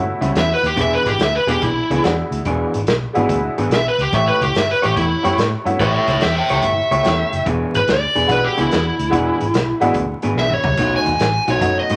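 This swaggering, soulful electric blues shuffle opens with a jangly, detuned honky-tonk upright piano, a slightly broken-up guitar riff through a small old amp with spring reverb, and a round, foam-muted fingered bass. A vintage drum kit joins at 0.2 seconds with a punchy kick and dark cymbals in a pumping small room. At 0.4 seconds an overdriven lead guitar through a small cranked amp carries the melody up front over A7 and E7 changes, and a drum fill at 10.4 seconds leads into B7, all under light reverb and a layer of vinyl crackle in this cut from a longer piece.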